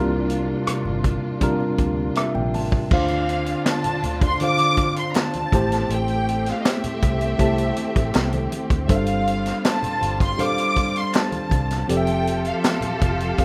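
Lush 1970s-style soul at 80 BPM in a straight 4/4, with a warm, romantic mood in this short passage cut from a longer piece. A worn, slightly out-of-tune tine electric piano sits up front, lightly overdriven through its built-in speakers, and plays the chords over a distant string section that sustains with vibrato and portamento. A dark, foam-muted fingered bass gives round, punchy low notes, while a vintage drum kit with a punchy kick, medium-tuned snare, rim clicks, hi-hat and dark crash cymbals keeps time alongside very quiet low-tuned congas. After an electric piano fill from 1.8 to 2.9 seconds, a smooth symphonic violin section takes up the melody at 2.9 seconds, moving through Dm7, Am7, G7sus4 and Fmaj9, and hollow, very quiet group handclaps join at 3.7 seconds. The sound has the rough, lightly reverberant character of a home demo mix.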